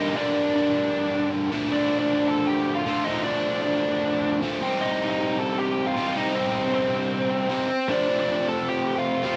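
A straight 4/4 punk pulse, aggressive and urgent, carries an up-front, double-tracked, picked distorted electric guitar riff while a biting, overdriven lead guitar plays a bright melody over Gm, Dm, Cm and F for the full 9.4 seconds, captured with light reverb as a band playing live in one room, in this cut from a longer piece.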